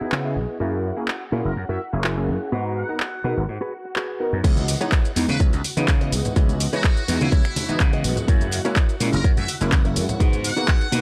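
Nostalgic and funky, this 11-second excerpt of filtered disco house at 125 BPM in C# dorian layers a buzzy muted trumpet section melody, a bright detuned polysynth comp with chorus and phaser, a swirling phased string machine in the background, a dark clean electric guitar riff roughened by 12-bit sampler grit, and a growly overdriven slap bass over a tape-toned analog drum machine of hats, snaps, claps, shaker and crash. All of these parts pump, and all but the drum machine run through a low-pass filter, until the drop at 4.4 s brings in an up-front layered electronic kick and distant, very quiet tambourine and congas as the chords move through C#m7, F#7 and G#m7 in a dry, gritty hardware-recorded sound.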